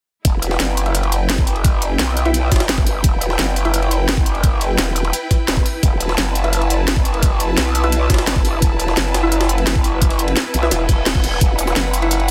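A dense, heavily limited mix with light reverb carries this dark, futuristic technical drum and bass excerpt at 172 BPM in E minor, where an up-front, growling, saturated bass with sidechain pumping and a knocking electronic kick drive beneath a layered drum and bass kit of cracking snare and crisp hats, a very quiet, gritty, pitched-up jungle sampler-style kit with ride cymbal, a lush bowed string section with vibrato, and a bold, detuned orchestra-hit-like synth stab with dub echo and a filter sweep that enters at 0.9 seconds in the background, while a reverse cymbal appears at 10.9 seconds.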